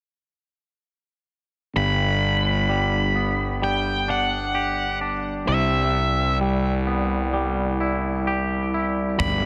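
At 1.8 seconds a dark, fuzzy octave-fuzz lead guitar carries a soaring melody over clean, twangy electric guitar arpeggios with digital delay and a round, overdriven fingered bass, and a warbling, nostalgic lo-fi pad drifts in behind them at 3.3 seconds as the harmony moves from G to Cmaj7 in this euphoric, slow 65 BPM post-rock excerpt in G major, before a punchy big-room rock kick and toms and a faint, slightly broken-up guitar through a small old amp arrive at 9.2 seconds, all bathed in light reverb.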